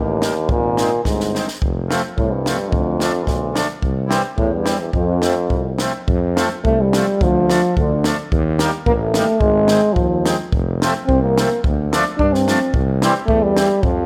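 Alpine folk in a bouncy, festive dance-band vein at 108 BPM in 2/4 with a rubato feel, this short cut from a longer piece puts a warm, roomy euphonium with light vibrato up front on the melody over a clear, soft-attacked tuba bass, a reedy, dark accordion entering at 0.2 seconds, and a dry, compact cocktail drum kit with a high-tuned snare and punchy kick that adds a fill at 1.0 seconds, all in F major under light reverb.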